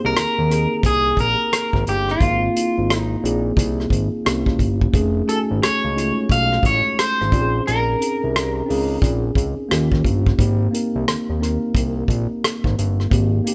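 A relaxed 88 BPM neo-soul R&B groove with a 16th-note swing in Ab major sets a warm soul drum kit of tight kick, hi-hat and rim click under a fat, nasal analog bass, a mellow tine electric piano comping through chords like Abmaj9, C7b9 and Bbm11, and a twangy, slightly broken-up electric guitar with harmonic tremolo carrying the melody until 9.0 seconds, all captured as a band playing live in one room with light reverb in a short cut from a longer piece.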